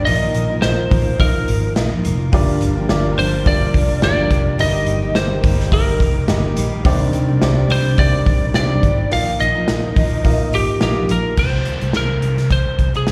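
A lightly swung 4/4 groove from a polished, airy country drum kit and a round, foam-muted electric bass drives this bittersweet, driving piano pop clip, which sounds like a live gig heard through the venue's PA in a recital-hall space. A bright, twangy lead guitar with a touch of grit carries the melody up front, while a woody upright piano, a full-bodied dreadnought acoustic guitar picking a riff in the background and a lush but very quiet bowed string section fill out the harmony, with slapback echo on the guitars and piano. At 11.4 seconds the piano, acoustic guitar and strings stop and an electronic downlifter enters, leaving the lead guitar, bass and drums to carry the final stretch to 13.1 seconds.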